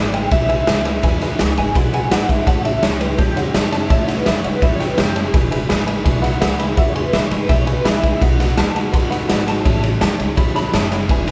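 A straight 4/4 beat at 167 BPM from a punchy, gritty garage drum kit of kick, snare and ride, entering at 0.1 s, drives this rowdy, retro rockabilly excerpt in E mixolydian, where a twangy, slightly broken-up electric guitar carries the melody with tremolo over a thumpy, woody pizzicato upright bass, a jangly, detuned honky-tonk piano in the background and a very quiet, bright picked acoustic guitar, the band playing live in one room with moderate studio reverb as the chords move through E7, A7, E7, B7 and A7.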